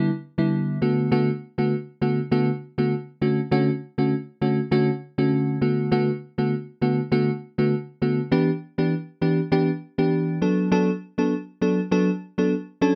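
A crystalline FM electric piano plays alone and up front through this hypnotic, sultry afrobeats passage. Its sparkling, fast-attack, decaying tone carries a noise layer and chorus, and it moves through Em7, Bm7 and Dmaj7 in B minor at 100 BPM in 4/4 with a 16th-note swing, tuned to A4 = 436 Hz. The recording is dry and gritty with light reverb, and a new section begins at 8.3 seconds before the 13-second cut from a longer piece ends.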